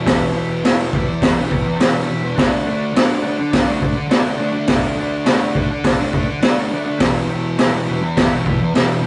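Menacing and swaggering, this short garage rock fragment at 104 BPM in E minor sets a thick, double-tracked fuzz guitar riff up front beside a raw, gritty drum kit with a boomy kick and high-tuned snare, while a buzzy vintage combo organ holds sustained chords in the background and adds a fill from 0.6 to 2.4 seconds as the harmony moves from Em to D and back, all caught in a rough rehearsal-room recording with light reverb and a dull top end.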